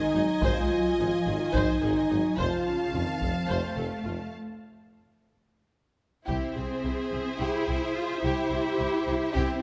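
This cinematic, epic orchestral cue opens on bowed strings and horns together: a lush violin section carries the melody high over a second, intense violin line, while a mellow French horn section holds soft-attack chords up front and warm, expressive cellos anchor the bass. A rich, smooth double bass section and a focused, close-sounding viola section join within the first moments, along with a clear tuba in the background and a taiko ensemble struck with hard sticks in a live room. Set in an uneven 7/8 with a straight, relentless drive, the harmony moves from Ab to F before a break at 4.3 seconds, where the tuba has already dropped away. A new section begins at 6.3 seconds on C, and the taiko stops at 7.4 seconds while the strings and horns press on. The scoring-stage reverb gives the vibrato-rich violins a distant, spacious bloom, while close, detailed microphones keep the horns and violas present in this excerpt cut from a longer piece.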